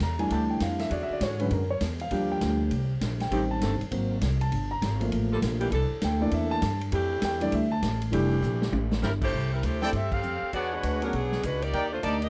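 An energetic big-band swing fragment opens with an intimate grand piano soloing over woody, growly pizzicato upright bass and a distant, roomy drum kit with a boomy kick, as a soft-attacked saxophone section holds clear sustained chords through a drum fill, after which a bright, smooth-topped saxophone melody arrives at 9.0 seconds and trumpet section stabs with light vibrato join at 9.8 seconds, all in a dry, swinging mix.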